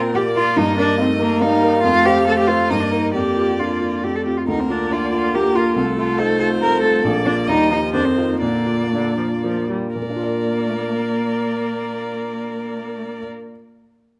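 Spirited and graceful, this quick classical-period movement for piano quartet in Bb major and 3/4, cut from a longer piece, moves with rubato at 111-143 BPM as an intense, clear violin with airy bow and vibrato carries the melody, a rich, focused viola and an up-front baby grand piano with open tone and long sustain supply accompaniment, and a warm, expressive cello with soft attack and portamento sings a second line, captured by close, detailed microphones in a large studio with moderate reverb, the music slowing down from 6.4 to 10.0 seconds.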